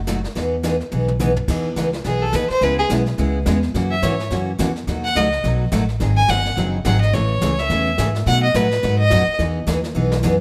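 Playful and cheerful, this western swing country excerpt rides along on a woody, thumpy pizzicato upright bass, a bright, full-bodied picked dreadnought acoustic guitar and a brushed drum kit with dark cymbals and a boomy kick, which plays a fill at 0.9 seconds. At 2.1 seconds a clear, smooth bowed fiddle with light vibrato enters up front to carry the melody as a solo, over changes that move from Emaj7 through C#m7, F#7, B7 and G#7 to Amaj7 and B7 before returning to Emaj7. Light reverb lends the small-room sound a touch of air.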